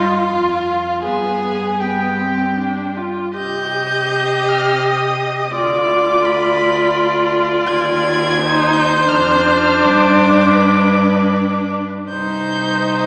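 Heard from far back in a reverberant concert hall with a small-speaker quality, this excerpt from a slow, rubato classical string quartet movement in C minor and 3/4 at 76-85 BPM feels elegiac and yearning: a warm, expressive first violin sings the high melody with vibrato and portamento, a rich, even second violin carries the inner line, an up-front viola adds a sliding, vibrato-laden accompaniment, and a smooth cello anchors the bass, while the harmony moves from G to C minor at 3.4 s and settles back on C minor at 12.1 s.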